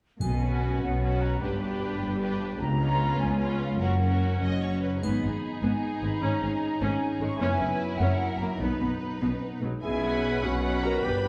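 Bowed violins carry the smooth, vibrato-rich melody from 0.4 s in this heroic, triumphant cinematic adventure cue in 6/8 at 100 BPM in B major, alongside a lush, distant second violin line and airy flutes, over intense violas, close cellos and distant double basses, a background French horn section, a ringing fingerpicked harp, round soft-mallet timpani and a bright triangle, with a roomy solo clarinet and clear trumpet stabs arriving at 9.8 s, the whole cue set in a moderate scoring-stage reverb.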